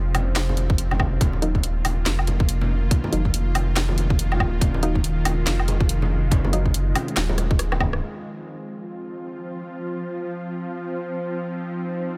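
A half-time groove at 141 BPM in 4/4, swung on the sixteenths, drives this heavy, dark excerpt of deep dubstep in F phrygian, moving from an F5 chord to Ebm and back. A layered garage drum kit sits up front with a cracking snare, handclaps, rim click, woodblock and warm hats. A tight electronic kick, re-recorded in a large room, arrives at 0.7 seconds, while ringing congas struck with hard hands sit distant in the background under a dub echo. A thick, mellow triangle sub bass with tube saturation holds low sustained notes up front, and a very quiet, muted sawtooth chord stab with a filter pluck and chorus decays through the middle of the groove. Over it all, a tense, string-like sawtooth drone with vibrato, a noise layer and a bright edge swells in slowly and rings out alone after a drum fill ends the beat at 8.0 seconds.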